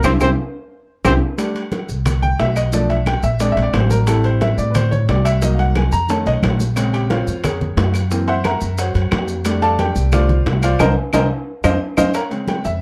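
A brilliant, up-front baby grand piano takes a sophisticated, danceable Afro-Cuban jazz solo from 1.4 s, after a brief opening band accent where a dark, breathy trumpet with plate reverb and a brilliant, punchy trombone in the background sound only until 1.1 s, all over woody pizzicato upright bass, tight high-tuned bongos, damped thick-skinned congas, ringing metal-shell timbales, grainy maracas and claves in a dark, lightly reverberant production.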